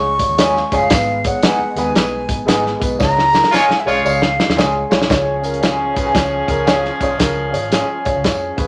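Uplifting and danceable, this short cut from an uptempo 1960s-style soul piece moves at 115 BPM in 4/4 with a swung eighth-note feel, centred on C# with a turn to G# minor. A breathy jazz flute carries the melody with vibrato and a soft attack until 4.9 seconds, over a dark, woody upright piano whose action noise and slight detuning give it an intimate character. Round, punchy muted electric bass sits low beneath an up-front soul drum kit with a tight kick and medium-tuned snare, while a jingly tambourine adds a very quiet shimmer. Slightly broken-up electric guitar stabs through a small old amp sit in the background, bathed in spring reverb. A drum fill and band accent arrive at 3.0 seconds, and a clear, tight horn section enters at 3.5 seconds with a second line, its tube saturation lending a vintage edge as the music moves into a new section, all set in a wet studio reverb.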